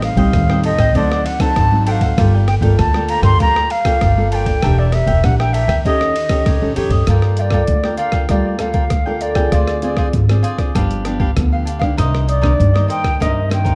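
An airy, close-miked wooden flute with vibrato and a slapback echo carries the melody and takes a solo from 7.1 s in this lively, yearning samba and choro excerpt, set over crisp picked cavaquinho, fingerpicked nylon-string guitar with finger squeak, a woody pizzicato upright bass, and a gritty, compressed boom bap sampler-style drum kit up front with a thumpy kick, hi-hat, ride cymbal and rim click, within a dark production touched by light reverb.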